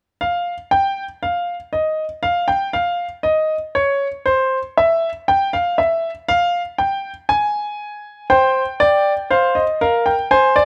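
A steady, straight 4/4 pulse at 60 BPM carries this solemn yet driving baroque-style classical fugue in four voices, taken from a longer piece and tuned to A4 = 441 Hz. A lone grand piano plays from 0.2 to 10.7 seconds within a high register from Bb4 to Ab5, its intimate, polished tone heard up front with long sustain and audible action noise. Close, detailed miking and light reverb frame the counterpoint, which opens with its harmony undefined by any chord before settling onto a C minor chord at 8.3 seconds.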